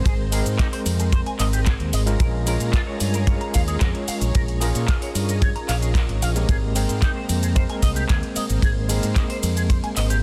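Nu-disco with a sunny, groovy feel, built on a dry, tight kick and warm, up-front fingered bass with tube saturation, while a barky, overdriven tine electric piano with tremolo, tape echo and sidechain pumping carries the accompaniment, a bright, twangy envelope-filtered guitar riff shimmers through lush chorus, a vintage sawtooth string machine holds sustained chords in the background, and a layered electronic pop kit adds handclaps, shaker, ride and metallic hats over a single Abmaj9 chord in this dense, heavily limited excerpt cut from a longer piece.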